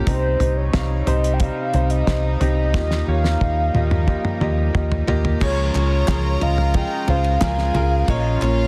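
Straight 4/4 piano-driven pop with a bittersweet, dramatic mood rides on a damped 70s drum kit with a fat snare and a fill from 2.7 seconds, a foam-muted, round fingered electric bass up front, vintage grand piano accompaniment, a rich string section floating in the background and a mellow horn-like synth lead with chorus and tape echo carrying the melody, before a reedy violin section and a full-bodied picked steel-string acoustic guitar riff join at 5.4 seconds, followed by crisp group handclaps from 5.8 seconds in this cut from a longer piece.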